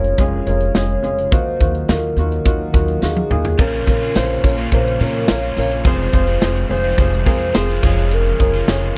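Piano-driven pop with a driving, bittersweet mood, heard in a brief cut from a longer piece. A worn, slightly detuned upright piano carries the accompaniment, while a hollow, clarinet-like synth lead with chorus and vibrato sings the melody above it. Underneath, a woody, thumpy upright bass played pizzicato on gut strings pairs with a punchy, up-front studio drum kit, and a jingly tambourine sits in the background from 0.8 seconds. A very quiet, evolving sawtooth pad with a sub octave and chorus holds sustained chords throughout. After a drum fill at 3.0 seconds, a crunchy, double-tracked overdriven electric guitar enters at 3.6 seconds with a picked riff. The sound is dry and close, with little reverb, in the manner of a 1970s studio recording.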